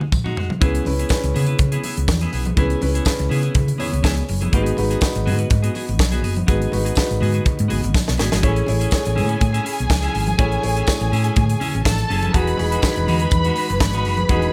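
A tight funk drum kit with a high-tuned snare sits up front beside a round, amped hollow-body electric bass in this danceable, glamorous disco excerpt at 123 BPM in C# minor, where clean picked electric guitar, a clear but boxy baby grand piano that adds a brief fill near 3.5 seconds, very quiet vintage congas and a jingly tambourine fill out the groove under light reverb until a lush, woody studio string section arrives at 8.4 seconds over chords moving from C#m7 through G#m7 and Amaj7 to Emaj9.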